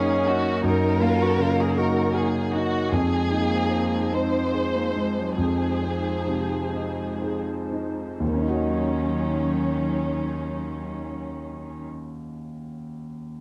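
In a rubato 6/8 that gradually slows, this reflective, longing neoclassical fragment sets a veiled, con sordino violin section on the melody over a dark, softly bowed cello second line and a deep-bassed grand piano with long sustain, while a breathy, chorused pad holds mellow chords in the background until 11.9 seconds, leaving the piano alone until 13.4 seconds in a close, dry, detailed sound.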